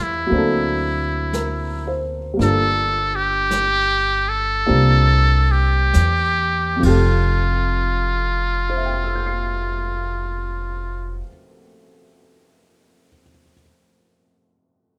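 A tender, intimate jazz ballad in F major opens with a muted trumpet carrying the melody, its buzzy, thin tone touched with light vibrato, alongside an upright piano whose short-sustain chords carry audible action noise and a woody, pizzicato upright bass up front. From 0.3 s a brushed drum kit with dark cymbals and a boomy kick sits in the background until 7.0 s, as the swung 4/4 pulse slows from around 60 BPM toward 42 over chords moving from D7b13 through Gm7 and C7sus4 to Fadd9. After trumpet and bass stop at 11.2 s, the warm piano finishes alone in light reverb.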